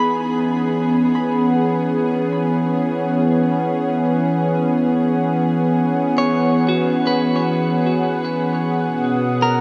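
Ambient piece at 51 BPM in a weightless mood, cut from a longer work, where a smooth, detuned sawtooth pad with chorus holds sustained chords up front, a clean, picked electric guitar plays compressed arpeggios through tape echo, a tense, string-like bowed drone with vibrato and built-in reverb sustains throughout, and a glassy, ethereal glass harmonica adds beating texture in the background, all four sounding for the full 9.6 seconds in a vast, echoing space, moving from an E6 chord to B at 8.9 seconds.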